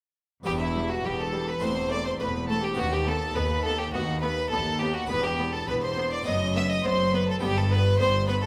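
In a straight four-four pulse, this stormy, dramatic excerpt from a baroque-style concerto movement places a close, reedy solo violin up front beside a high chamber violin section carrying the melody, with a second violin section and lightly vibrato violas in the background, rich cellos and warm double basses on the bass line, and an airy, brilliant harpsichord accompaniment, set in a wet recital-hall reverb.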